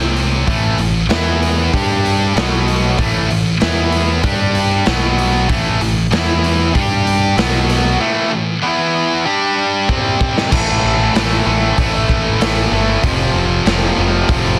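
This hard rock excerpt moves at a driving, menacing 96 BPM in 4/4 with a straight feel, set in A minor. Two picked electric guitars sit up front: one is heavy and high-gain with distortion, the other has a bright overdriven edge, and both play riffs across the same span from F2 to G4. Underneath, a modern picked electric bass gives a direct, growly low end. A raw garage drum kit enters at 0.2 seconds with crash, hi-hat, punchy kick and a medium-tuned snare, its sound gritty and saturated with a rolled-off top in a stone-room ambience. Power chords cycle through A5, E5, G5 and B5 until 9.9 seconds, where the harmony shifts to C5 under a drum fill. From 10.5 seconds a new section returns to A5 and then moves to F5, all within a small room and a dense, heavily limited modern master.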